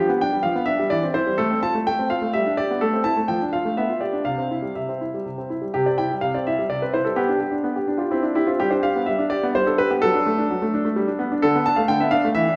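A cheerful, elegant classical-period piano sonatina in 3/4 with a rubato feel, played solo on a clear, intimate concert grand with deep bass, long sustain and audible action noise, sitting up front in a wet concert hall reverb as a phrase is stated and then restated at 5.8 seconds in this brief excerpt cut from a longer piece.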